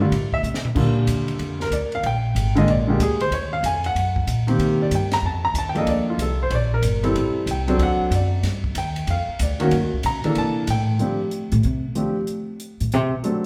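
Set in a large, reverberant studio heard from further back in the room, this short, sophisticated swinging jazz piano trio fragment in Bb major at 188 BPM features a clear, intimate, up-front concert grand piano soloing with audible action noise and deep bass over rich chords from the very start, with a brief early fill from a dry, compact cocktail drum kit with dark cymbals, a high-tuned snare and a punchy kick, until 11.0 seconds, when the woody, up-front pizzicato upright bass takes its own solo.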